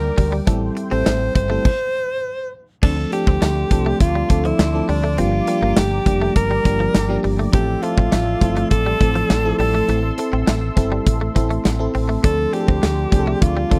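A dry, close studio sound frames this dramatic, urgent 1980s-style pop excerpt in D minor at 102 BPM, led up front by a clear, punchy alto saxophone with vibrato and slapback echo over a glassy, bell-like FM electric piano with chorus. Beneath them sit a round, dark fretless electric bass, a twangy, clean guitar riff recorded direct with subtle chorus and slapback echo, a detuned sawtooth pad with a slow attack and a filter swell in the background, and a huge arena drum kit with bright cymbals, tambourine and a punchy kick. After a brief stop from 1.7 to 2.8 seconds, the band moves through Dm7, Gm7 and Fmaj7.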